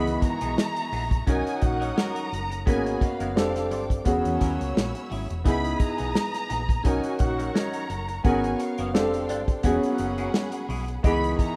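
Romantic and lush, this short cut from a longer 1970s-style soul piece moves at 86 BPM in 4/4 with a gentle sixteenth-note swing, settled in B major. A close, expressive studio violin section carries the melody with vibrato, while a clear symphonic violin section sits distant in the background on a second line, its intense bowed tone adding sheen. A warm baby grand piano with short sustain sits up front in the accompaniment, and a hollow-body short-scale bass plays a dark, round, amped bass part. The dry acoustic drum kit, with a tight kick and medium-tuned snare in a pumping room, enters at 0.1 seconds and drives the groove up front. In the background, a bright, twangy guitar through a small old amp plays a slightly broken-up, compressed riff with phaser, and a smooth-topped horn section adds pop-style stabs, all over rich chords like C#m9, Bmaj9 and G#m11 in a light, small-room rough demo mix.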